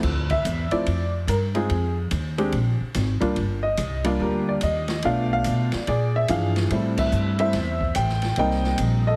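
An intimate concert grand piano carries the melody up front in this moody, cool jazz trio excerpt, its deep bass and audible action noise set in plate reverb. A woody, pizzicato upright bass with steel strings is also up front, while an open acoustic drum kit with dark cymbals, a medium-tuned snare and a boomy kick plays until 8.9 seconds, with a band accent at 6.9 seconds. The swinging trio moves through a run of colourful jazz chords in a moderate large studio reverb, with a heavily compressed, radio-like sound.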